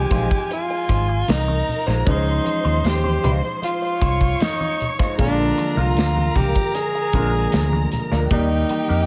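A breathy, whispered tenor saxophone carries the melody up front in this silky, smooth stretch of lush 1970s-style soul, its scooped notes and vibrato floating over an expressive bowed violin section with tape echo and a clear concert grand piano. Underneath, a dark, round, foam-muted electric bass sits prominently beside a polished acoustic drum kit with a punchy kick, while a slightly broken-up electric guitar with wah plays a riff in the background, and soft-handed congas and a grainy, distant tube shaker stay very quiet. Light reverb and small room ambience surround the chords as they move from Ab6 through Dbmaj9 and Bb7 to Ebmaj7 at 8.3 seconds.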